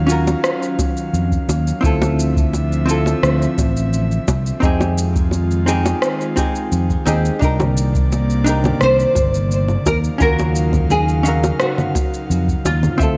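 A bright 1980s-style digital production bathed in moderate plate reverb frames this wistful, relaxed sunset chillout excerpt at 86 BPM in 4/4, drifting through minor ninth chords from Ebm9 to Dm9, Fm9 and Cm9. A punchy, up-front fingered electric bass joins a deep analog-style electronic kick, while electronic shaker, rim click and congas with gated reverb mingle with round, low-tuned bongos in the background; a dark, clean hollow-body jazz guitar with digital delay comps alongside an airy, breathy pad shimmering with chorus. At 8.8 s a woody, fingerpicked nylon-string guitar with old strings takes up the melody, dressed in ensemble chorus and digital delay.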